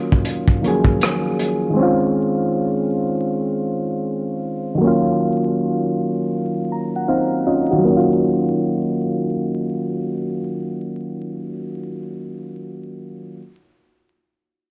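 Vinyl crackle and a moderate spring reverb give this short cut from a longer lo-fi hip hop piece a hazy, melancholic cast, set at 79 BPM in 4/4 with a swung 16th feel in Eb dorian. Soft, round electric-piano-like synth keys with a gentle, warbling vintage tone carry the Ebm9 and Dbmaj9 chords throughout, colored by chorus, cassette tape character and a low-pass filter sweep that runs until 7.8 seconds. A crunchy, gritty breakbeat kit with a punchy kick, hi-hat and rim click sits up front, playing only from 0.1 to 1.6 seconds.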